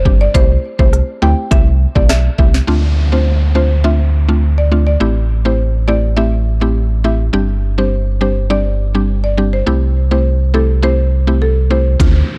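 A deep sine sub bass with an octave opens this tough, sultry dancehall excerpt. It is soon joined by a round, chorused synth pluck with sidechain pumping, an overdriven electronic kit whose knocking kick and sharp snare drive the opening until 2.7 seconds, and a buzzing, dry, close-miked marimba melody with digital delay. From there the marimba carries on over the bass and pluck, with a soft electronic downlifter running until 7.3 seconds as the chords move from Dm7 through Am7 and Gsus4 back to C6. The kit returns only briefly at 12.0 seconds, and the whole mix feels dark and close, with tape saturation and little reverb.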